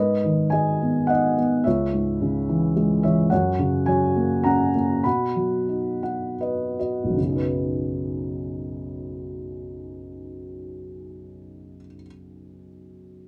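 A felt-muted upright piano opens this lyrical classical solo in B major, its soft, boxy, intimate tone sitting up front in a dark, gently reverberant sound, spanning B1 to B5. In a rubato 3/4 between 73 and 110 BPM, the harmony moves from G#m through C#m and F#add9 to B, with the tempo slowing from 3.3 seconds and a piano fill arriving at 5.7 seconds. At 7.2 seconds a new section settles on Badd9, carrying the hopeful, warm mood of this passage cut from a longer piece.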